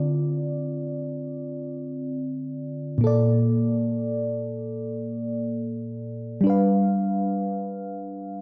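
A mellow FM electric piano plays alone from the first moment, its soft, round tone carrying a noise layer and a fast attack that decays, coloured by chorus and phaser and sitting up front. This moody, sensual R&B fragment moves from Dm7 to Bbmaj7 at 3.0 seconds and on to G7 at 6.5 seconds, spanning Bb2 to F5. A lush hall reverb and dark production surround the instrument across its 8.4 seconds.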